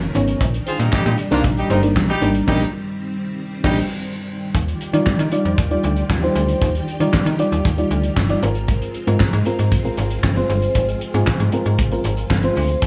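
A straight 4/4 groove from a damped, dry acoustic drum kit with a fat snare, tight kick, dark cymbals, handclaps and gated reverb drives this smooth, danceable early-eighties boogie funk cut, with a snappy, metallic slap-like FM bass up front. A round, warbling FM electric piano with chorus adds decaying accompaniment, while a lush string machine in the background holds sustained chords moving from Ebmaj7 through Ebmaj9 to Ab69. A clear horn section with vibrato and octave doubling plays a second line from 0.7 to 3.8 seconds, and the full band plays an accent from 2.5 to 4.5 seconds, all within a small room ambience.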